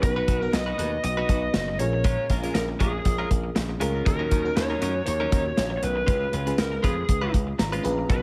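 Heard in a small room with light reverb, this excerpt of 1980s-style pop puts its drum kit up front, bathed in gated reverb. The mood is nostalgic yet urgent, moving at 119 BPM in 4/4 with a light swing on the sixteenths over chords of B, Bbm7, Ebm7 and Db7. A dark, overdriven lead guitar through a small cranked amp carries the picked melody with a lo-fi grit, while a direct-recorded clean electric guitar plays a compressed riff softened by lush chorus. A bright, punchy slap bass holds the low end beneath the kit's medium-tuned snare and rolled-off top. In the background, a dreamy FM electric piano with a soft pad layer and chorus offers mellow, fast-attack, decaying tones, then adds a fill at 7.3 seconds.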